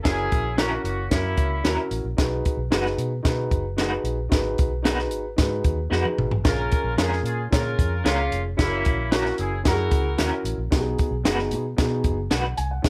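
A tight, clear horn section with light vibrato opens this uplifting, uptempo 1960s-style soul excerpt at 112 BPM alongside a mellow, boxy grand piano and a round, foam-muted fingered electric bass, as a compact cocktail drum kit with a punchy kick and high-tuned snare sits up front and a bright, twangy guitar through a small old amp adds slightly broken-up tremolo stabs from 0.6 s over chords moving from F#7 through B6 and G#m7 to A#m7, with the horns returning at 6.4 s during a drum fill that begins at 5.9 s, all in light reverb.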